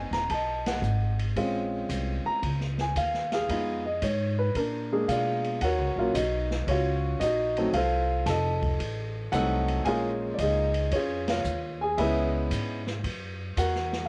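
Jazz piano trio in a cool, late-night mood, swinging at 113 BPM in 4/4 and starting in Bb minor before moving to Eb minor at 5.6 seconds. A warm grand piano carries the melody up front, its tone set in plate reverb, while a woody pizzicato upright bass with steel strings sits close beside it holding down the low end. An open acoustic drum kit plays hi-hat, kick, ride and snare further back, with dark cymbals, a medium-tuned snare and a boomy kick, all colored by cassette tape. The harmony moves through minor seventh, half-diminished and dominant chords such as Bbm7, Fm7b5, F7b9 and Gb7, and the whole trio hits together in accents at 0.6 and 11.2 seconds. The sound is that of a light-reverb home recording on cassette, and the clip is cut from a longer piece.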